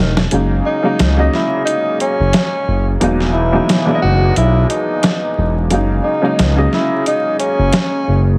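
Swung sixteenths at 89 BPM drive this confident, nostalgic boom-bap hip-hop excerpt in F# mixolydian, where a gritty sampler-style kit plays a brief fill at 0.2 s before the kick drops out, leaving hi-hat and snare under a gliding, detuned synth bass, a worn, woody upright piano with cassette-tape coloring cycling through F#6 and Emaj9#11, and a breathy tenor saxophone with light vibrato and scooped notes whose filtered lead carries a slapback echo, all set in a small room with crackling vinyl and a heavily compressed radio sound.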